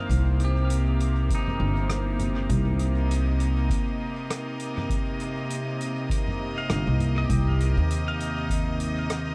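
A woody, thumpy pizzicato upright bass sits up front in this spacious, deep ambient dub excerpt at 100 BPM in C minor, resting on a Cm7 chord beneath dark, floating bowed strings played sul tasto, twangy fingerpicked pedal steel arpeggios with slide, volume swells and dub echo, a deep analog electronic kick re-recorded in a large room, and a distant soft-mallet kit of hi-hat, rim click and toms that also carries dub echo, all in an echo-heavy mix with light reverb.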